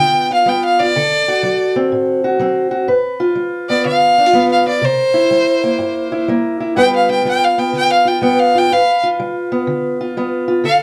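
Laid-back and swaggering, this blues excerpt moves at 124 BPM in 4/4 with a swung eighth-note feel, set in G mixolydian and tuned a touch sharp at A4 = 444 Hz. A single bowed fiddle carries the melody as a solo from start to finish, its tone rich and focused with a light vibrato, ranging from C5 to G5 and sitting up front. Beneath it, a fingerpicked steel-string parlour guitar supplies the accompaniment across the full 10.8 seconds, its sound dark and boxy, also placed up front. The harmony moves through dominant seventh chords, G7, D7 and C7, with a fresh pass of the main section beginning at 2.9 seconds. A moderate small-room reverb gives the pair an intimate, close-up setting, as if the players share a modest space.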